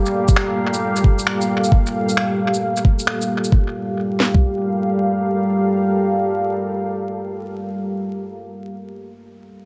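Future garage at 133 BPM in G minor, this ghostly, rainy excerpt opens on a Gm9 chord, with a deep, dark sawtooth pad of detuned unison and sub octave sitting up front, carrying chorus, built-in reverb and sidechain pumping, and sustaining until 7.9 seconds. A soft, felt-muted upright piano with audible action noise sounds only briefly in the background through analog delay. Tape-warm electronic shaker and finger snaps with tape echo sit up front until 3.5 seconds, and a swung garage kit with a knocking kick and cracking snare sits up front until 4.4 seconds, all set in an echo-heavy mix with vinyl crackle.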